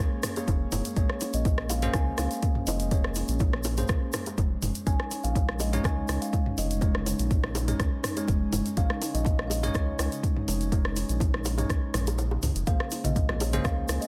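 An up-front, deep electronic kick drives this spiritual afro house groove at 123 BPM in straight 4/4, alongside a deep house kit of hi-hat, rim click and toms, tight high-tuned bongos, a grainy egg shaker and, in the background, bright low-tuned congas that appear only from 13.0 to 13.6 seconds, while the kick drops out from 12.2 to 12.7 seconds. A round analog bass with sidechain pumping sits up front beneath bell-like tine electric piano stabs, which also pump and carry delay, as an ethereal, airy, very quiet pad sustains chords moving from Bbm9 to Absus4 at 4.9 seconds and back at 12.7 seconds. On top, a woody, hollow-sounding kalimba with delay plays the melody in a light digital ambience, in this excerpt cut from a longer piece.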